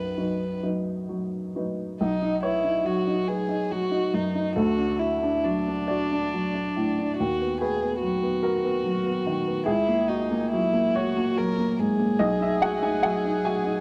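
Set in a slow 6/8 at 47 BPM counted in dotted quarters, the rhythm moves with uneven beats and free rubato, giving this neoclassical piano and strings piece an intimate, tender feel in B major. An upright piano with a woody, natural tone sits up front and carries the accompaniment throughout, ranging from B1 up to G#5. A single bowed violin plays the melody between D4 and B4, its dark, sul tasto sound marked by light vibrato, soft attacks and a smooth top, close and up front alongside the piano. The harmony moves from B to D at 4.6 seconds, then through B/D# and F#add9/C# before returning to B at 12.2 seconds, with a brief opening section giving way to a second section at 2.0 seconds. A wet spring reverb and a dark, warm production wrap the two instruments in a soft glow across this short excerpt cut from a longer piece.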